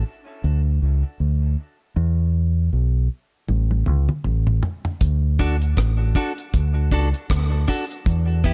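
A deep, round fingered electric bass sits up front and plays alone at the start of this laid-back, spacious dub reggae excerpt at 79 BPM in D major with a swung sixteenth feel, before a dry, dark acoustic drum kit of hi-hat, tight kick, rim clicks and toms enters with a fill at 3.5 seconds, and a clean, picked, compressed electric guitar carrying spring reverb and dub echo joins at 5.4 seconds in an echo-heavy mix.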